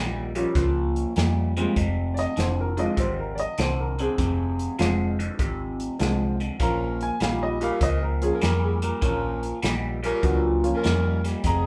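Soulful and brooding, this electric blues shuffle rolls along at 99 BPM in 4/4 with a swung eighth-note feel, cut from a longer piece and moving from Bb minor to F minor and back. A dark, worn grand piano carries the accompaniment with a boxy, intimate tone and audible action noise. Up front, an electric guitar through a small old amp plays the riff in a low register, slightly broken-up and lo-fi, colored by a phaser. Underneath, a hollow-body short-scale electric bass gives a round, amped low end, while a natural country drum kit enters at 0.4 seconds with a punchy kick, medium-tuned snare and hi-hat in an airy, polished studio sound. At 6.6 seconds a saxophone section arrives with smooth-topped jazz stabs and vibrato, as the band plays together live in one room with moderate reverb.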